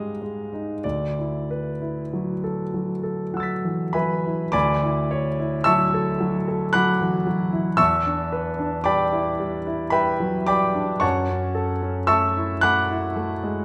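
A clear, intimate grand piano opens this hazy, luminous fragment of impressionist solo piano in D major, drifting in a rubato 3/4 at around 46-57 BPM across a range from D2 to B6, its natural, up-front tone carrying audible action noise through a wet recital hall reverb as colourful seventh and ninth chords unfold over 13.6 seconds.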